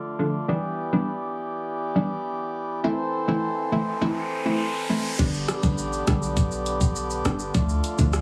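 A reedy, nasal hand-pumped harmonium breathes dark sustained chords through sidechain pumping and a low-pass filter in this bouncy, sultry dancehall excerpt, joined by a round, full-bodied analog pluck with chorus, an electronic riser at 3.4 s, and at 5.2 s a deep, boomy 808-style bass and an overdriven pop drum kit of knocking kick, rim click, hi-hat, shaker and crash, the mix carrying a heavily compressed radio sound with small room ambience and light reverb.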